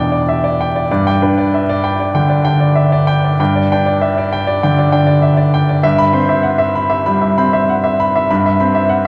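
Rubato phrasing loosens a 98 BPM pulse in 4/4, so the time breathes freely in this short excerpt of neoclassical minimalist piano. A solo baby grand carries the whole excerpt from 0.0 to 9.1 seconds, ranging from E2 up to B5 with a clear, natural tone and long sustain. Placed up front, the instrument lets its audible action noise come through, which gives the playing an intimate, melancholic closeness. The harmony moves from Em7 to G at 0.9 seconds, then settles on Cmaj7/G at 5.8 seconds. A wet church reverb with a 3.2-second tail surrounds the piano, suggesting a church or concert hall.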